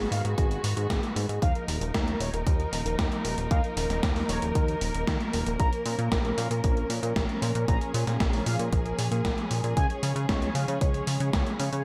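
A straight 4/4 pulse at 115 BPM drives this nostalgic, melodramatic italo disco fragment in Eb minor, with a gated 80s digital drum machine of hi-hat and snare with gated reverb joining at 0.1 s and a punchy, layered electronic kick from 0.4 s, while a glossy, up-front chorused synth bass built on pulse and sawtooth waves with a filter pluck anchors the low end. Above it, a muted studio string section bowed con sordino holds veiled, lush chords, and a mellow synth brass carries the melody in a round, full-bodied, detuned sawtooth tone with vibrato, chorus and delay. The harmony moves from Abm through Ebsus2 and Bbm to Db, all set in a digital ambience with a tape-warm sheen on the drums.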